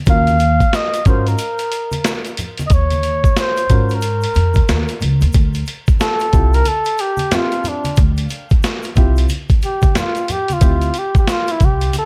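This mellow, nocturnal jazz-hop excerpt opens with the whole band at once: a gritty, compressed boom bap drum kit with a thumpy kick and a high-tuned snare, set up front with a swung sixteenth-note feel. A woody pizzicato upright bass sits equally forward, while a dark upright piano adds soft accompaniment, and a bright egg shaker and congas played with soft hands stay low in the mix. Over this, a breathy flugelhorn carries the melody with light vibrato and scooped notes, its jazz phrasing given a sheen of plate reverb and tape echo against an otherwise dry room. The harmony sits on Ebm11 before shifting down to Dm11 at 5.3 seconds, where the flugelhorn moves into a solo that runs to the end. The piano drops out at 10.9 seconds and the bass at 11.9 seconds, leaving the horn, drums and hand percussion to close the passage.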